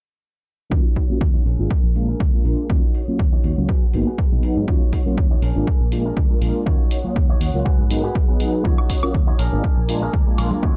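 Filtered disco house with a groovy, nostalgic mood, cut from a longer piece and carried by a lightly swung sixteenth-note feel over minor-seventh and dominant-seventh changes. A dry, punchy analog kick sits up front in a small room, joined at 1.0 s by dry electronic hi-hat and woodblock, while a dark, round fingered bass, foam-muted and amped, anchors the low end. Mellow synth brass, detuned and sawtooth-edged with chorus, phaser and vibrato, plays the accompaniment under a filter sweep that runs through the whole passage, while a bright, twangy guitar riff with an envelope filter cuts through and a lush string machine with ensemble chorus sits in the background. Sidechain pumping and low-pass filtering shape the melodic parts, the bass, the hats and the percussion, giving the groove its breathing, muffled push. Ringing tambourine and congas arrive at 8.7 s, and the whole track has a gritty, cassette-tape character with digital ambience.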